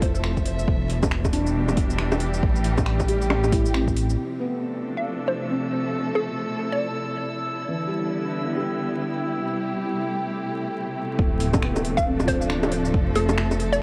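Melancholic and rainy, this future garage excerpt moves at 137 BPM in D dorian with a swung 16th feel, as a felt-muted upright piano accompanies a rich, bowed chamber string section holding sustained chords throughout, both pumping under sidechain, the piano soft and intimate with analog delay and the strings filtered. A dark, detuned saw bass rumbles up front alongside an overdriven electronic kick and a deep house kit of bongos, finger snaps, metallic hats and shaker, all gritty with 12-bit sampler crunch, until the low end and drums drop out by 4.2 seconds. A glassy, drifting harmonics texture then enters at 4.8 seconds, followed at 5.0 seconds by a hollow, bouncy square pluck melody with chorus and tape echo. The bass and kick return at 11.2 seconds over Dm7 and Fmaj7, with the kit rejoining at 11.4 seconds, and light reverb and vinyl crackle colour the whole.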